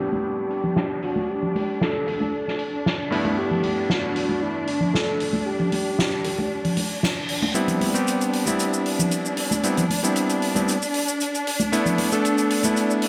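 A clear, up-front electric grand piano with a clangy low end, long sustain and dub echo underpins this groovy, sunny nu-disco fragment, joined by dark, woody bowed strings under a filter sweep and a round, mellow octave-layered synth lead with chorus and delay that sings the melody until 7.0 s. Congas and bongos and a soft-mallet kit with hi-hat, shaker and a fat snare keep a straight pulse, while an electronic reverse cymbal at 6.8 s leads into a build-up from 7.6 s. The mix sits in light reverb behind a low-pass filter, and the passage is cut from a longer piece.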